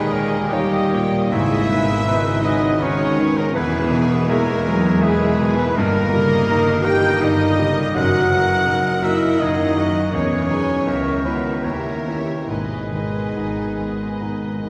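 Heard from further back in a concert hall with a long, wet reverb, this 14.7-second excerpt of a passionate, tragic romantic movement for piano and orchestra unfolds in a rubato 3/4 at around 68-83 BPM in G# minor, opening on a D#7 and settling back on G#m at 12.5 s. A clear, intimate baby grand piano, its action noise audible and its notes sustaining long, carries the melody alongside a distant, rich violin section, while a bright clarinet, an airy, hollow silver flute and a warm oboe weave second lines in the background, joined by a second, focused violin section. Beneath them a French horn section holds soft-attack sustained chords most prominently, a mellow, punchy bassoon and lush, very quiet violas accompany, and intense double basses, smooth-topped cellos and a mellow tuba anchor the bass.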